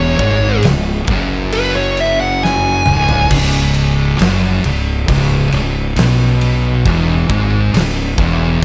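A dry cut from a longer stoner and doom metal piece, ominous and heavy at a slow 68 BPM in C# minor. A compressed, up-front fuzz lead guitar with digital delay plays a solo that ends at 3.3 seconds, over a dark, picked fuzz guitar riff, a second, warmer fuzz guitar riffing in the background, and a growly, overdriven fingered bass sitting up front. The big-room drum kit has a fat snare, punchy kick and rolled-off top, with a fill from 2.4 seconds that leads into the next section, where the lead and the background guitar drop away, leaving the main riff, bass and drums.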